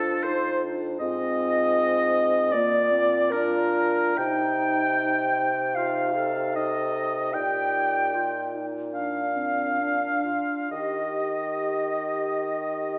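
An up-front oboe with light vibrato and a smooth top sings a second line alongside the concert flute's pure, straight-toned melody, whose crisp attack leads this serene, tender slow romantic movement for wind quintet in Eb major, taken at 62-79 BPM in 4/4 with a rubato feel. A mellow, distant clarinet and a close-miked French horn fill in the accompaniment, while a roomy bassoon holds the bass, and all five instruments sound together throughout this 13-second passage cut from a longer piece. The quintet sits in a wet scoring-stage reverb as the chords move from F through Fm7/Ab, Bb and Cm to settle on Eb at 10.7 seconds.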